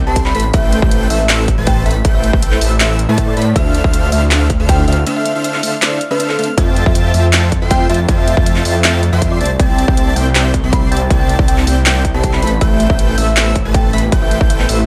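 Bathed in digital ambience and pumping with sidechain compression, this euphoric, bright future bass excerpt moves at 159 BPM in a half-time 4/4 feel, tuned to A4 = 438 Hz, with a brief break from 5.1 to 6.6 seconds over chords from Am9 through Dm9, Fmaj9 and C69. A thick, saturated detuned saw bass and a punchy, overdriven electronic kick sit up front, while a dubstep drum kit adds gritty handclaps and hi-hat, and a huge, compressed supersaw riff with vibrato fills out the mix. In the background, a round, tine-like synth pluck with vintage warble carries the melody through chorus and delay, an airy, dreamy lead spins high arpeggios, and a second, very quiet, dark pluck plays lower arpeggios.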